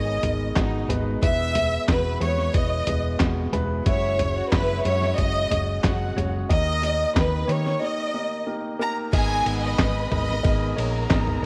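A roomy echo-chamber reverb surrounds this short cut from a driving, earnest piano-driven pop piece, where a bright, focused violin section carries the melody up front with slapback echo while a second, warmer violin section sings a background line. Beneath them a dark, mellow concert grand supplies the accompaniment, a round, amped hollow-body bass holds the low end, and a muffled, tape-warm sampler-style kit with thumpy kick, fat snare, handclaps and cymbals enters at 0.2 seconds. A break arrives at 7.8 seconds before the music moves into a new section at 9.1 seconds, returning to the opening G#madd9 chord.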